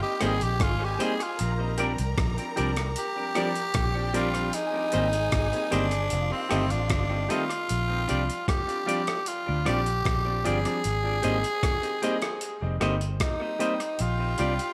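Lovers rock reggae with a tender, romantic mood, led by an up-front, raspy tenor saxophone soloing through tape echo, over a lush violin section that drops out at 7.7 seconds and returns at 14.0 seconds, a brilliant grand piano with long sustain, clean hollow-body guitar stabs in spring reverb, a round, foam-muted bass, and a gritty, overdriven sampler-style kit of thumpy kick, hi-hat and rim click in a small room.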